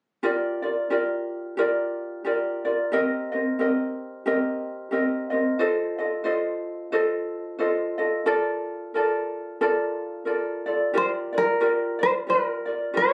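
A relaxed, sunny Hawaiian piece opens with a bright, thumb-plucked ukulele laying down light accompaniment from 0.2 seconds, moving through gentle sixth and seventh chords in Bb major. The tempo sits at an easy 90 BPM in 4/4, with a lilting swing on the eighth notes. Around 11.0 seconds, as the music shifts into a new section, a tenor ukulele enters up front with a warm, fingerpicked melody in a narrow upper range. Both instruments sound acoustic and intimate, set in a moderate, club-like reverb that carries the casual air of a phone recording made in the room. This short passage is cut from a longer piece and ends at 13.1 seconds.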